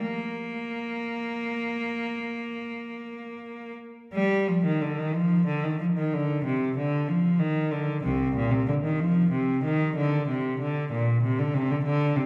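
A single bowed cello opens this serene, flowing excerpt of a baroque-style suite movement for unaccompanied cello, played by one player in Bb major. The pulse sits around 56-64 BPM in dotted quarters within a 12/8 metre, handled with a rubato feel that lets the phrasing breathe. The cello's tone is rich and smooth, coloured by vibrato and kept even throughout its span from C2 to Bb3. The instrument sits up front, while a wet recital hall reverb carries the sound, giving a sense of hearing it from further back in the room. After an opening passage, a new section begins at 4.1 seconds and continues to the close at 12.3 seconds, cut from a longer piece.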